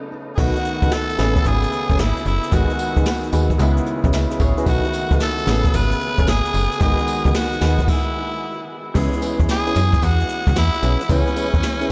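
Upbeat and flirty, this swung new jack swing R&B excerpt opens with a clear, intimate concert grand piano alone before a breathy, raspy tenor saxophone takes the solo melody at 0.4 seconds, its edgy pop-style vibrato trailed by analog delay. A lightly overdriven tonewheel organ with key click and slow rotary speaker sits in the background with stabs, while a snappy, metallic FM bass, a brush drum kit with a boomy kick, dark cymbals and tambourine, and a grainy, bright tube shaker drive the groove over chords such as Amaj9 and G#m7. A stop from 7.9 to 9.0 seconds breaks the flow before the final section, and the whole mix floats in a dreamy, reverb-soaked cathedral space.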